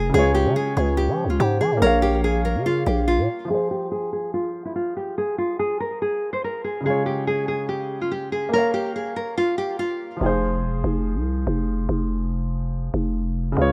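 A fingerpicked nylon-string guitar carries a full-bodied classical melody up front over a natural-toned baby grand piano and a growling, buzzy 808-style bass, both guitar and piano muffled by a low-pass filter, in this tense, cold drill cut at 143 BPM in half-time, in F minor. The bass drops out at 3.3 seconds while a filter sweep shapes the middle stretch over chords moving between F minor, D-flat and B-flat minor. At 10.2 seconds the guitar stops and the fast-attack, decaying bass returns beneath the warm piano, all in a dry, rough home-demo mix.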